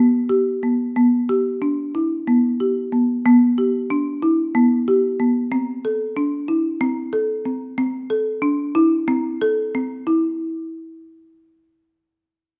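A solo folk marimba, struck with medium mallets on hardwood bars, carries this restless, urgent contemporary instrumental from 0.0 s to 10.4 s. Its tone is woody and rustic, with a dry, up-front attack that keeps every note close to the listener. Set in E minor with a tuning of A4 = 435 Hz, the line stays within a compact range from B3 to A4. The music moves in a straight 7/8 metre at 184 BPM counted in eighths. A moderate recital hall reverb, with a decay time of 1.4 s, surrounds the instrument, and a new section begins at 10.1 s in this passage cut from a longer piece.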